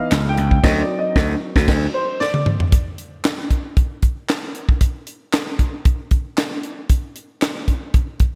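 A straight, even four-four groove drives this short early-eighties boogie funk fragment, funky with a late-night air. A warm grand piano, coloured by analog chorus, opens with a solo turn over a Dbm9 chord, and a gritty slap bass with growly, punchy overdrive joins almost at once. A tight acoustic funk kit sits up front, with a high-tuned snare, a firm kick, bright cymbals, handclaps and toms. The band strikes an accent on D7b9 at 0.6 seconds, and a drum fill leads into the second section at 2.7 seconds. From there the piano and bass have dropped out, and the drums carry on alone until 8.3 seconds, with a crash among the kit's sounds. A lush hall reverb and small room ambience lend the mix a dreamy, reverb-soaked glow.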